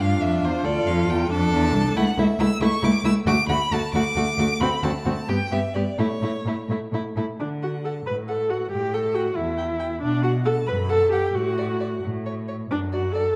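Dramatic and stormy, this quick classical-period movement for string quartet moves in a lilting 6/8 with a free, rubato pulse, and it is a fragment of a longer piece. All four players sound from the opening: a rich, focused first violin carries the melody high above, while a smooth, even second violin traces a supporting line beneath it. The viola sits up front with an expressive accompaniment, colored by vibrato and portamento, and the cello anchors the bass with a full, vibrant tone that sounds slightly distant. The harmony opens darkly on D minor before turning toward a brighter D major, and a new section begins at 7.4 s. A wet recital-hall reverb and a dark, warm production surround the bowed strings, giving the ensemble a resonant, enveloping sound.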